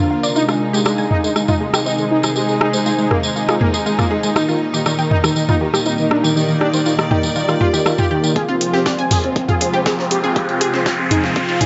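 A rich, bowed string section holds sustained chords from the first moment, joined at once by a round, detuned analog pluck spinning arpeggios through tape echo and a very quiet, cloudy granular pad drifting underneath. This is cinematic, hypnotic melodic techno in F dorian at 120 BPM, and within the first half second a vintage, warbling brassy pad adds stabs, a jingly acoustic tambourine enters, and a bold, nasal analog synth brass takes the melody with vibrato and echo. A deep house kit with metallic hats, rim clicks and toms arrives at 0.5 seconds, its hats and toms pumping with the sidechain along with the strings, pluck, brassy pad and brass, while the harmony moves from Ab to Eb. At 8.4 seconds the build-up begins on Fm: a gritty, compressed breakbeat kit recorded in a small room, a deep kick and a soft, airy dreamy lead with portamento join as the tambourine drops out. An electronic riser enters at 9.4 seconds and carries the build to the end of this section of a longer piece, all set in a lush hall reverb within a dark, warm production.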